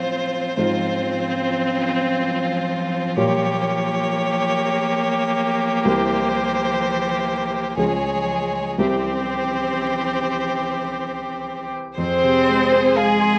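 Lyrical and tender, this slow romantic movement for piano quintet in F minor unfolds in 3/4 at about 54-70 BPM with a rubato feel, taken from a longer piece. Two up-front violins carry the melody and a second line, the first singing with vibrato and expressive portamento, the second smooth and even. A distant, rich cello adds its own bowed line, while a focused viola and a natural, short-sustaining baby grand piano supply the accompaniment in light reverb, the harmony passing through C7, Db and C before settling on F minor at 12.0 seconds.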